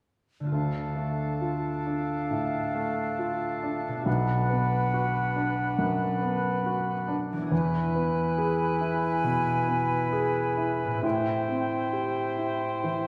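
Ringing, fingerpicked concert harp arpeggios open this bittersweet, moving cinematic film-score excerpt at 0.4 s, joined a moment later by a clear, polished baby grand piano accompaniment up front and second lines from a pure, tongued flute, a mellow cor anglais with light vibrato and a bright, soft-attacked clarinet, all drifting in rubato around 68 BPM through Dm, Bm, E and Am7, heard from further back in a wet scoring-stage reverb.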